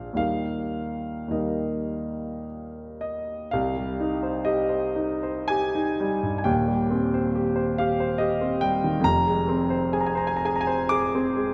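Dreamy and nostalgic, this brief excerpt from a romantic classical nocturne sets a warm, polished grand piano up front in a gently reverberant concert hall, moving in a slow, rubato 3/4 between 50 and 72 BPM across a range from Eb1 to D6, opening in Eb major before turning to C minor at 3.5 seconds and reaching an F minor chord at 9.0 seconds.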